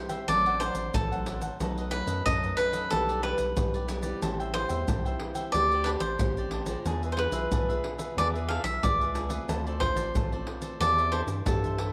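A wet spring reverb and small-room ambience surround this yearning, bittersweet samba and choro excerpt at 91 BPM in straight 4/4, where a bright, up-front picked cavaquinho carries the melody over a second crisp cavaquinho and a fingerpicked nylon-string guitar with audible finger squeak, a live-room percussion bed of tube shaker, pandeiro and deep surdo, and a rubbery, hollow square-wave bass entering at 0.3 seconds, moving through chords such as D7/A, B7, Em7/B and E7b9.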